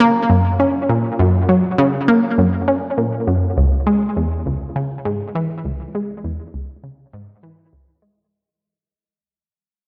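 Dark and steeped in a long plate reverb, this cosmic, mysterious ambient fragment centres on a single up-front analog pluck riff, round and detuned with a bright sawtooth edge, shimmering through chorus and tape echo before the whole thing fades out from 3.6 seconds.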